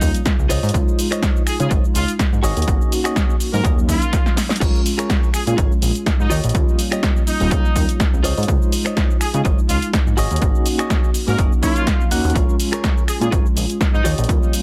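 A swung groove drives this groovy, sensual slice of filtered disco house, cut from a longer piece, with an overdriven electronic kick sitting up front and a punchy analog drum machine adding snare, hi-hat, cabasa, finger snaps and crash cymbal, plus a short drum fill at 4.1 seconds. Underneath, a fat analog bass with a nasal, detuned sawtooth-and-square tone, tube saturation and a plucky filter holds down the low end, pumping against the kick like the other melodic parts. A reedy electric piano with fast tremolo and phaser comps through the chords, cycling from Eb9 through Dbmaj9, Ab7sus4 and Bbm7. A bright, twangy clean electric guitar, recorded direct, plays a picked riff and takes a brief fill at 11.4 seconds. Over the top, a clear jazz-style horn section carries the melody with light vibrato and a soft attack, trailed by a digital delay. The whole mix sits in a digital ambience.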